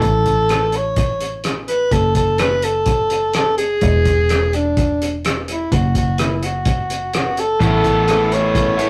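A rough rehearsal-room recording with tube saturation and a moderate studio reverb gives this short cut from a longer folk rock and heartland rock piece a gritty, lived-in sound and a warm, open-road mood. At 127 BPM in a straight 4/4 in A major, a mellow soprano saxophone carries the melody up front from start to finish, smooth on top with a classical-style vibrato. A fingered electric bass sits low and round underneath, while a cloth-damped, thuddy drum kit with a tight kick, hi-hat and rim click sounds muffled and lo-fi, its top end rolled off. A dark, crunchy overdriven guitar, double-tracked and up front, strikes its riff at the opening and returns at 7.6 seconds. A very quiet, boxy acoustic guitar, picked in a swing style, follows the same pattern of entries. The chords move from A through F#m and E to a chordless pause at 5.7 seconds before settling on Asus2.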